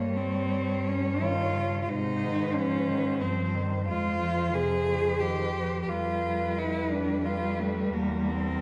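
Yearning and melancholic, this lyrical classical passage for cello ensemble moves at 89 BPM in a rubato 3/4, opening in Ab major before turning to F minor at 3.9 s. A rich, distant cello carries the melody with vibrato and portamento above a clear, focused, up-front second line, an expressive inner accompaniment that also glides between notes, and a smooth, even bass. The bowed voices ring in a reverberant recital hall, and this fragment of a longer piece carries some lossy compression artefacts.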